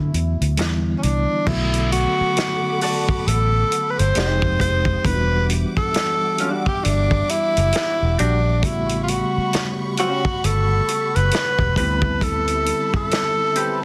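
An introspective, late-night slice of neo-soul R&B, cut from a longer piece, moving at a slow 67 BPM in E minor with a lightly swung sixteenth-note feel. A subtoned tenor saxophone carries the melody up front, its scooped notes and light vibrato given a slapback echo, while a mellow tine electric piano supplies clean accompaniment through its built-in speakers. Underneath, a foam-muted fingered electric bass sits dark, round and punchy, and a tight acoustic soul drum kit with a medium-tuned snare, rolled-off top and softly clipped kick plays crash, hi-hat, kick and snare. Lush bowed strings enter at 1.5 seconds with soft-attack sustained chords in the background, and a dark, picked hollow-body jazz guitar joins at 2.4 seconds with a wah-coloured second line. The harmony drifts through extended chords such as Em9, A13 and D13sus4, set in a small, lightly reverberant room and finished with a dense, heavily limited modern master.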